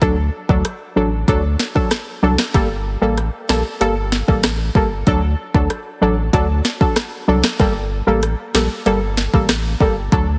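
A straight 4/4 dancehall groove at 95 BPM rides on an electronic afro-pop drum kit that sits up front, with a deep kick, sharp snare, rim clicks and warm hi-hats, giving this brief cut from a longer piece a tough, sultry mood in G harmonic minor. Punchy, brassy synth stabs with a sawtooth edge, a plucked filter snap and a chorus shimmer also sit forward, moving between D and Gmadd9. Beneath them, a thick, saturated sub bass holds low sustained notes, all framed by light reverb and a heavily compressed, radio-style sound.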